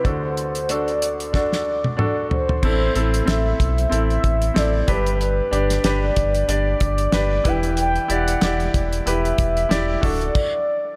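A mellow, horn-like synth lead with chorus, tremolo and vibrato carries the melody in this hopeful piano-driven pop piece over a clear, polished concert grand with slapback echo and a dry, damped 70s drum kit with dark cymbals and a fat snare, whose fill at 1.3 seconds comes just before a deep, sine-toned sub bass with octave enters at 2.6 seconds, the whole mix sitting in a lush hall reverb for a big arena sound.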